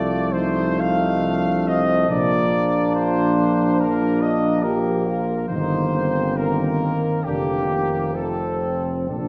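A tight, up-front trumpet section with light vibrato carries the melody of this melancholic, elegiac, hymn-like classical brass band excerpt in 4/4 with a rubato feel, while a punchy yet distant flugelhorn sings a second line, a solo trombone with a smooth top and a background trombone section supply the accompaniment, and a soft-attack tuba holds the bass, the band heard from further back in a wet scoring-stage reverb.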